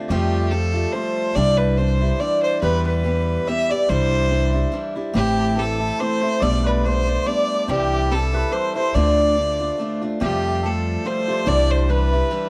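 A rich, smooth fiddle with light vibrato carries the melody up front in this dark but spirited Celtic waltz at 142 BPM in 3/4, with a lilting swing, cut from a longer piece. A bright, boxy picked steel-string parlour guitar and a woody, pizzicato upright bass sit close beside it, while a shimmering, ringing hammered dulcimer plays a second line in the background over chords moving from Fadd9 through Em, Am and Dm. Between 5.2 and 10.0 seconds a mellow, hollow metal whistle with an airy chiff adds a high second line, all captured in a dry, close 1970s-style small room.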